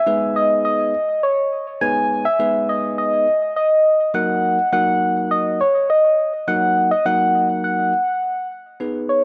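A round, warbling FM synth lead carries the melody up front, its vintage tone thickened by chorus, plate reverb and tape echo as it moves between C#5 and G#5. Beneath it, a bell-like, clean tine electric piano plays the accompaniment, shifting from G#m to D#m/F# at 4.1 seconds. This driving, confident pop drop at 103 BPM in a straight 4/4 is cut from a longer piece, and its home cassette recording places it in a small, wet-sounding booth.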